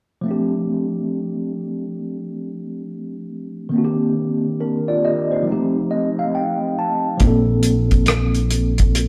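A clean, up-front tine electric piano, heard through its built-in speakers, carries this relaxed, sensual neo-soul and R&B excerpt at 69 BPM with a swung 16th feel in F major, voicing rich extended chords and adding a fill at 5.5 s before a woody, dark pizzicato upright bass on steel strings and a dry, thuddy, cloth-damped drum kit with a tight kick, hi-hat, rim click and a rolled-off top join at 7.2 s, the band playing live together in a moderate stone room.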